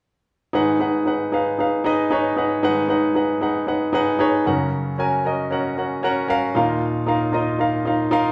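A clear, polished baby grand piano sits up front in a wet large-studio reverb, sounding like a band captured live in one room. This anthemic, uplifting pop excerpt moves at 115 BPM in a straight 4/4, with the piano playing accompaniment from 0.5 to 8.3 seconds across a broad span from D#2 to G#5. Its present chords move from G#m7 to F# and settle on D#sus2, tuned slightly sharp to A4 = 441 Hz.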